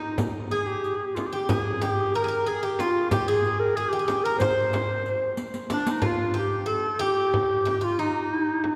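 A growling clarinet and a picked Greek bouzouki open this hypnotic, soulful passage from a longer Turkish makam ensemble piece, moving at 185 BPM in eighths through a straight 9/8. The clarinet carries the melody up front in a jazz style: raspy and gritty yet mellow, with vibrato and scooped notes. Beneath it the bouzouki plays a quieter second line with a metallic, double-string ring and some octave-doubled strings. A small, bright frame drum played with soft hands and a riq with dark jingles sound close and dry almost at once. A very quiet alto saxophone with a soft attack adds a classical-style second line until 5.4 s, where a drum fill leads into a new section at 6.0 s and the riq drops out. The whole ensemble sits in the wet reverb of a church or concert hall.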